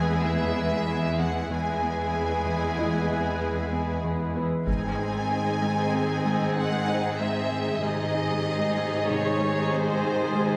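A lush blend of bowed strings and a shimmering, retro pulse-width pad opens this cinematic excerpt from a hybrid orchestral and electronic film score, moving at 95 BPM in a straight 5/4 with a futuristic, relentless mood. A clear, intense violin section carries the melody from a distant placement, while a second, smoother violin section plays a supporting line beneath it and a rich viola section sits in the background as accompaniment. Up front, the cello section anchors the bass, and the chorused pad holds sustained chords with a slow attack, detuned sawtooth and ring-modulated colour, and a moving notch. Threaded through are very quiet details: a dark, tine-like synth pluck spinning arpeggios with fast, decaying notes, and a felt-muted upright piano whose intimate, mellow tone carries audible action noise. The harmony shifts from E to G# at 4.7 seconds, where a close, dry taiko ensemble struck with hard sticks enters and plays until 5.9 seconds, all set within a wet scoring-stage reverb.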